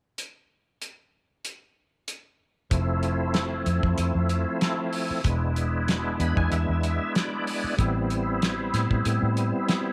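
A cloth-damped drum kit opens alone at 0.2 s with hi-hat, a tight kick and a fat, thuddy snare, its small-room sound setting a brooding, smoky straight-eighth soul blues groove at 95 BPM. At 2.7 s a dark, round, foam-muted electric bass and a bright, reedy tonewheel organ with key click, chorus vibrato and a slow rotary speaker come in over Fmaj7, E7 and Am9. The organ stands up front and plays a fill from 5.9 to 7.8 s, all with light reverb in this excerpt from a longer piece.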